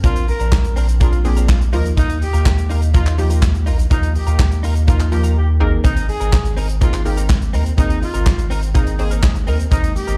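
From the first beat, a punchy, up-front acoustic drum kit of kick, snare, hi-hat, shaker and handclaps drives this euphoric, carefree dance-pop excerpt at 124 BPM in Eb major, together with a thick, saturated sub bass that pumps to the sidechain, a bright, detuned analog pluck with chorus that also pumps, a clean, compressed direct-recorded electric guitar riff with analog chorus, and a distant horn-section melody trailed by analog delay, the mix sounding as if played over a big sound system in a bare room, with a brief silence from 5.4 to 5.8 seconds as the chords move from Bbadd9 through Ebsus2 to Abadd9.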